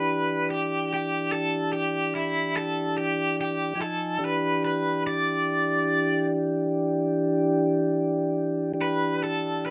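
A slow, straight 12/8 pulse carries this brooding, smoky blues fragment, cut from a longer piece and resting on a single minor seventh chord for its 9.7 seconds. An overdriven electric guitar, bright and picked with tremolo, sits up front with the melody, while a mellow tonewheel organ holds soft, flute-like chords with audible key click through a slow rotary speaker. Digital ambience surrounds the pair in a rough home demo mix.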